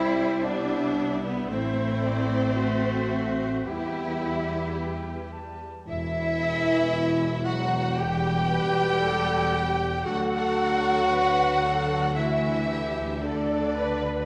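Bittersweet and moving, this rubato orchestral film cue drifts through C, A minor, E minor and D, with a clear, focused violin section carrying the melody in the background while a dark, distant second violin section, a clear classical clarinet and an airy, mellow flute weave second lines around it. A rich, even viola section fills the middle, a roomy French horn section holds sustained chords, and a smooth-topped cello section and a rich double bass section anchor the low end. The whole passage sits in a wet scoring-stage reverb and carries the worn, warbling pitch drift of old cassette tape, lending the moment a faded, nostalgic haze.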